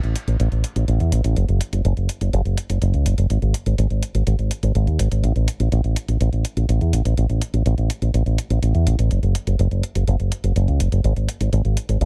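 A straight 4/4 pulse at 124 BPM drives this bittersweet, nostalgic italo disco fragment of about 12 seconds, where an up-front fingered electric bass with an envelope filter and tube saturation moves between F#1 and E2 with a direct, warm tone, while a sampler-style electronic hi-hat with a tape-warm character and the air of a large room sits well beneath it, both playing throughout a dry, close 1970s-style studio sound.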